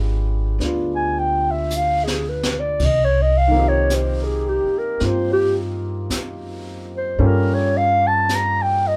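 A slow swung pulse in four sets the pace for this smoky, melancholic jazz ballad fragment, cut from a longer piece and played by a small band live in one modest room. Upright bass and a clear, woody upright piano with long sustain open together, the pizzicato bass sitting up front with a steel-stringed, woody tone while the vintage piano comps smoothly beneath. A distant brush kit slips in at 0.6 seconds, its dark cymbals, high-tuned snare and boomy kick sounding roomy, and it adds a brief fill between 1.7 and 2.8 seconds. The dark clarinet carries the melody from 1.0 seconds, close-miked and up front, with vibrato coloring its jazz-styled solo line. The harmony drifts from G7b9 to Cm7 and later to Gm7b5, all softened by a modest small-room reverb.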